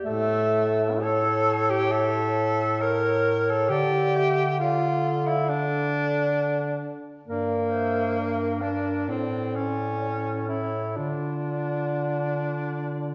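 An up-front tenor saxophone with mellow vibrato carries the accompaniment in this solemn, melancholic classical fragment for single-reed quartet, as a dark, distant clarinet sings the melody over a vintage-toned bass clarinet and a soft-attacked, smooth-topped alto saxophone with light vibrato traces a second line in the background, the whole moving with free rubato through a wet recital-hall reverb.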